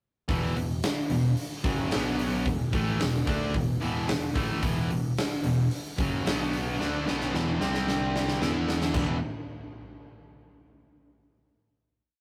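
Menacing and heavy, this short hard rock piece in E minor drives a power-chord riff at 111 BPM, with an overdriven electric guitar sharing it with a sludgy guitar set in the background and a very quiet, double-tracked high-gain guitar, while a growly picked bass doubles the riff in driving eighth notes. A huge arena drum kit sits up front with a punchy kick, bright cymbals and a big rock groove, breaking into a fill at 6.8 s before the band lands on a final chord at 8.9 s. The whole thing has the rough feel of a rehearsal room, with tube saturation and light reverb.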